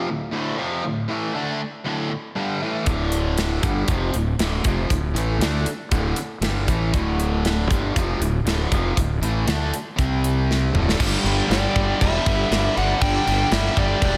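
Fuzzed, up-front fingered bass and a tight metal drum kit with bright cymbals crash in at 2.9 seconds beneath two overdriven, picked rhythm guitars, one cranked stack run through phaser and slapback echo, driving a powerful, energetic hard rock riff at 118 BPM in straight 4/4 over D5 and C5 power chords. After a drum fill, the music shifts to G at 11.0 seconds, where a very quiet double-tracked high-gain guitar joins, and half a second later a biting lead with digital delay sings a high melody over a dark octave-fuzz second line in the background. A lush hall reverb gives this cut-off fragment a big arena sound.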